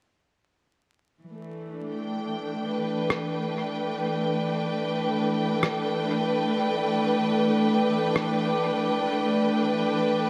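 Meditative and hazy, this free-time ambient dub excerpt opens at 1.2 s with a lush, woody bowed string section sustaining a Dsus4 chord up front, its vibrato close and warm. A glassy harmonics texture with drifting sine-like overtones slips in behind at 2.5 s, slow to bloom and long to fade, softened by chorus and its own reverb. A muffled, compressed, sampler-style rim click arrives at 3.1 s, darkened by a low-pass filter and trailed by dub echo, all within a wet spring reverb and a layer of vinyl crackle.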